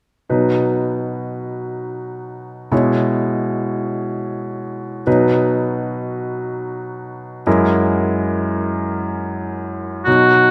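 Romantic classical music for oboe and grand piano, tender and lyrical in a slow 6/8 with rubato: a bright grand piano carries the accompaniment from 0.3 s through shifting harmonies, its action noise faintly audible and its notes sustaining long, and a clear oboe with light vibrato and a soft attack joins it up front at 10.0 s on a single F#4, all set in a moderate recital hall reverb as this short excerpt breaks off at 10.5 s.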